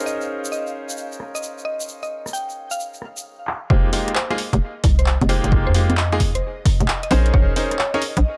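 A late-night, skippy two-step UK garage cut in F minor at 132 BPM, swung on the sixteenths, opens with a very quiet, ethereal pad under a filter sweep, bright grand piano stabs carrying tape echo, a woody mallet-like FM pluck melody with chorus, and a grainy egg shaker that drops out at 3.2 seconds. A tape-warm analog drum machine plays congas, handclaps, hi-hat and rim click through low-pass filtering, re-recorded in a small room. After a drum fill, the drop at 3.7 seconds brings in a hollow, bouncy FM bass sitting up front and a layered, punchy electronic kick, moving over Bbm11 and Fm11 chords in a digital ambience.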